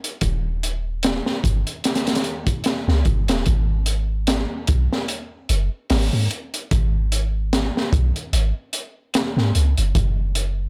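The sound is dry and close, with little reverb, so both parts sit up front in a studio room. This short, dark and smoky trip hop excerpt moves at an unhurried pace in four, with a light swing on the sixteenths. A crunchy acoustic breakbeat kit carries the groove with a tight kick, a high-tuned snare and hi-hat; its tone is gritty and saturated, with a rolled-off top that keeps it smooth rather than bright. A soft 808-style bass enters at 0.2 seconds, its round, sine-like notes striking with a fast attack and then decaying, their deep tone thickened by tube saturation. The piece shifts from an opening section into a second one at 3.5 seconds and runs to 10.7 seconds, cut from a longer piece.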